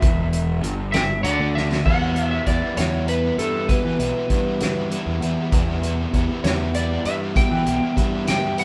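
A slide guitar solo opens this dark, mysterious psychedelic rock excerpt, its slightly broken-up tone played with fingerpicks and a slide, set over a slow 6/8 pulse at 65 BPM in E minor. From the start, a crunchy, double-tracked overdriven guitar drives a low riff shaded by harmonic tremolo, while a round, fuzzed electric bass anchors the bottom. A soft-mallet drum kit sits up front yet sounds roomy, with dark cymbals, a fat snare and a boomy kick, and it plays a fill from 1.5 to 1.9 seconds. At 1.9 seconds the harmony moves from an Em7 chord to plain Em as the band settles into the next passage, the solo having ended. The whole performance sounds like a band playing live together in a stone room with a moderate reverb.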